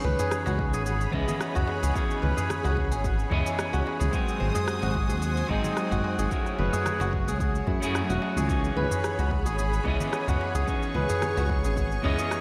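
A lightly swung sixteenth-note groove in 4/4 drives this hypnotic, meditative organic downtempo excerpt. Tape-warm electronic congas, cabasa and rim click are joined by a crisp, very quiet, close and dry darbuka at 0.2 seconds and an overdriven, deep electronic kick at 0.6 seconds. Beneath them sits a smooth, mellow synth bass, up front and pumping with sidechain. Ringing, fingerpicked kora arpeggios, also up front, are bathed in delay and shimmer reverb. A clean, picked electric guitar accompaniment carries delay, shimmer reverb and sidechain pumping, while a lush bowed symphonic string section holds sustained chords with vibrato, pumping under shimmer reverb. Together they move through C#m7, G#7 and F#m7 in a dreamy mix soaked in hall reverb.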